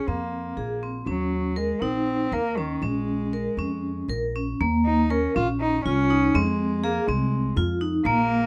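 Contemporary chamber music in 7/8, restless and hypnotic and cut from a longer piece, in which a single bowed cello sings a clear, biting, earthy melody with light vibrato over bright, metallic vibraphone arpeggios ringing under hard mallets and fast motor vibrato, while a woody, thumpy pizzicato upright bass holds the low line from 0.1 seconds, all three placed up front in light reverb.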